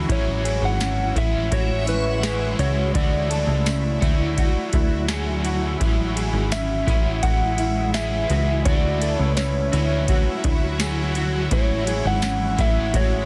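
This 13-second cut from a longer dream pop piece sits in a dense, heavily limited modern master with a digital ambience around it, its mood blissful and dreamy at 84 BPM in a straight 4/4, in A major, with chords moving between Amaj7 and Dmaj7. A booming analog drum machine carries kick, snare, ride cymbal and tambourine with a deep kick and tonal snare, tape-warm in character, while a punchy, funky analog bass sits up front with a plucky, fast-decaying sawtooth and pulse-wave tone. A dark, clean mellow electric guitar plays fingered arpeggios through analog chorus and delay, and a bright, double-tracked overdriven guitar adds crunchy picked accompaniment with harmonic tremolo and subtle chorus. Alongside them, a shimmering, ethereal ambient pad holds sustained chords with octave-up shimmer, slow attack, granular grain, chorus, reverb and phaser. The melody comes from a slightly broken-up electric slide guitar with delay, and from 1.3 to 9.0 seconds a very quiet, reversed and detuned swelling texture drifts in the same high register.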